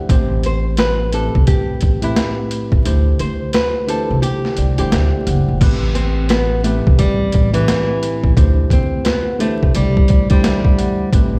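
A gritty, pitched-down sampler drum kit with a thumpy kick and high-tuned snare sits up front in this dark, reflective boom-bap hip-hop fragment, its kick dropping out from 2.9 to 5.6 seconds, while a woody pizzicato upright bass on gut strings, a worn, slightly out-of-tune tine electric piano heard through a combo amp, and a bright, fingerpicked nylon-string guitar carrying the melody are washed in vinyl crackle and large studio reverb, as if played on a big sound system in a bare room.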